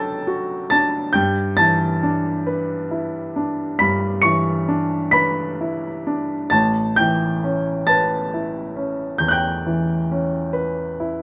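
Swaying in a rubato 12/8 at 45 beats per minute by the dotted quarter, this tender, dreamy romantic nocturne for solo baby grand piano spans A1 to C#7 with a clear, polished, up-front tone, moving from D/F# through Em7/G to A9 within a moderate large-studio reverb across 11.2 seconds cut from a longer piece.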